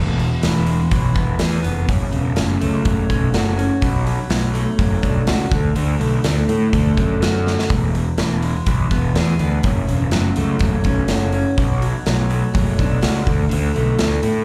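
Quiet-loud alternative rock in F# minor at 124 BPM, this angsty, brooding excerpt comes from a live club gig heard through the venue's PA, with a light club reverb around it. A full-bodied steel-string acoustic guitar picks arpeggios throughout, its tone given a plate reverb and a slapback echo. Underneath, a fuzz-soaked picked electric bass sits up front with a growly, overdriven bite, while a big rock drum kit with a punchy kick and medium-tuned snare drives the straight 4/4 on hi-hat, kick and snare. The chords cycle E, F#m, Bm7 and D twice, the second pass closing on D5. A drum fill at 7.5 seconds marks the turn into the repeat.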